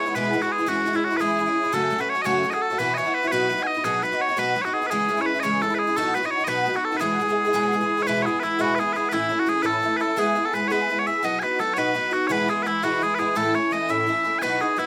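Piercing, up-front bagpipes carry the melody from the first second over a shimmering, boxy, octave-doubled picked twelve-string acoustic guitar with ensemble chorus, in a lively, rollicking Celtic jig in 6/8 at 114 BPM in E major, set in a moderate booth ambience and moving into a second section at 8.1 s before the excerpt is cut off at 14.9 s.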